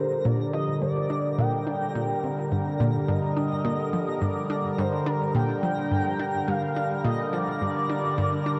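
This hypnotic, cosmic ambient piece, cut from a longer work, opens with all four synth parts sounding together from 0.0 seconds over one unchanging chord in a straight, steady pulse. Up front, a sweeping, wave-folded pad holds sustained chords that evolve through a resonant filter swell, coloured by chorus and phaser. Beneath it, an analog pluck repeats a low riff with a round, detuned, bright tone, fast attack and short decay, run through chorus, cassette tape and tape echo. An expressive lead sings the melody with a smooth, nasal voice and vibrato, treated with analog chorus and tape echo. In the background, a granular texture adds a twinkling, octave-up shimmer bathed in its own reverb. The whole sits in a dark production drenched in a huge, wet reverb with a 7.3-second decay.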